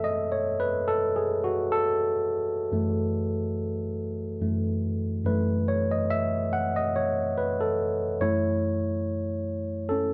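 A lightly swung sixteenth-note feel in 4/4 at 71 BPM sets a slow, late-night R&B groove in F# dorian, tuned to A4 = 438 Hz. A tine electric piano carries the whole excerpt alone, ranging from F#2 to F#5, with a worn, slightly out-of-tune character and a touch of overdrive that gives it a gritty edge. It sits direct and up front, resting on a soulful F#m9 chord before moving to F#m7 at 8.2 seconds, where a brief second section begins and runs to 10.1 seconds. The sound is captured live in one room with a moderate studio ambience and a short decay, and its top end is softly rolled off for a dusky, intimate tone. The passage is cut from a longer piece.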